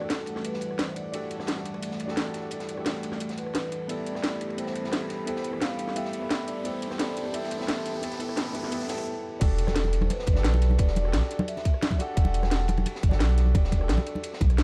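Lush and dreamy, this liquid drum and bass excerpt moves at 174 BPM in E minor, cut from a longer piece. It opens on a build-up where a mellow, ringing vibraphone played with soft mallets carries the melody through a low-pass filter and delay, its slow motor vibrato close and full, while a grand piano with tape echo accompanies and a smooth sawtooth-and-triangle analog pad holds sustained chords with chorus and sidechain pumping, shifting from Em11 to a rootless Fmaj9#11. Beneath them, an electronic drum and bass kit brings a cracking snare, metallic hats, rim clicks and crash cymbal, and a crunchy breakbeat kit with a saturated, gritty, high-tuned snare and dark ride sits in the background with its top rolled off. A riser in the background climbs from 2.8 seconds, the pad stops at 9.0 seconds, and after a brief break the drop lands at 9.4 seconds with an impact, returning to Em11. There a deep, round sine sub bass and a tight, up-front electronic kick take the low end while ringing, dry congas join the groove. 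The production is dark with light reverb.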